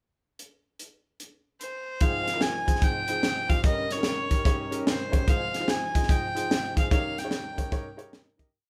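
A swung, driving two-beat praise groove opens the piece as a crisp fusion drum kit begins a pickup bar alone, its high-tuned snare, tight kick and hi-hat sitting up front in a small acoustic room. This short, uptempo gospel piece feels hopeful and reverent. A nasal, reedy fiddle with a gut-string tone enters at 1.6 seconds, carrying a bowed melody built from short song-like motifs. At 2.0 seconds the band settles into a breakdown: a woody, vintage upright piano adds rhythmic close-voiced chords with short sustain, while a mellow, dark tonewheel organ holds chords in the background, colored by key click, percussion, chorus vibrato, a fast rotary speaker and grace notes. The group plays live together in one room with moderate studio ambience, and the whole performance fades out from 6.9 seconds.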